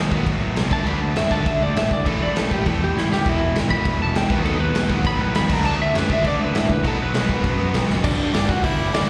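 A straight, driving 4/4 at 201 BPM sets a raw, urgent punk rock feel, pushed by an up-front, saturated garage drum kit with a punchy kick and rolled-off top, with fills at 3.0 and 7.9 seconds, and a growly fuzz bass. Two double-tracked, overdriven rhythm guitars with slapback echo churn through riffs over chords like B/D#, D5, A5 and Em in the background, with the cranked stack guitar dropping out at 8.0 seconds. A slightly broken-up, compressed lead guitar takes a solo from 0.7 seconds, and the whole cut sounds like a live gig heard through the venue's PA with recital hall reverb.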